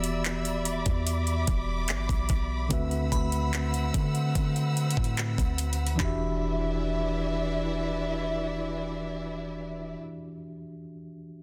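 A smooth R&B drum kit sits up front with a knocking kick, metallic hi-hats, handclaps and toms, dropping out at 6.2 seconds in this moody, longing contemporary R&B fragment. A mellow tine electric piano carries the Em7 and D13 chords through to 11.4 seconds, over a round, sine-like 808-style bass and a dark string section whose bowed, vibrato-laden chords glide with portamento and pump against the beat. From 3.1 seconds a glassy FM synth bell adds crystalline, chorused and delayed tones in the background, all within a dense, heavily limited modern mix with digital ambience.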